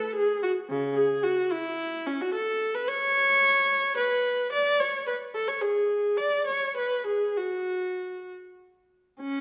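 In a flowing, dance-like 6/8 lilt at about 63-76 BPM with free rubato, this baroque-style classical suite movement is carried by a single bowed viola, smooth and warm with vibrato, reaching from C#3 to D5 and placed up front in a wet recital hall reverb that blooms for about 1.6 seconds, in a 9.4-second fragment cut from a longer piece.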